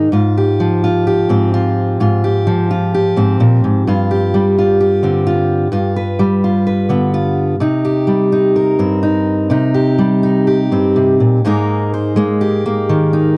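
A fingerpicked steel-string acoustic guitar plays alone in this melancholic, wistful folk excerpt, its full-bodied auditorium tone sitting up front in a dry, close 1970s-style studio sound with light reverb. In C minor at a rubato 64 BPM in 4/4, it moves from Fmadd9/Ab through G7sus4 and G7 to Cm, spanning G2 to C5. At 11.4 seconds a new section opens on Abadd9 before the fragment breaks off at 13.4 seconds.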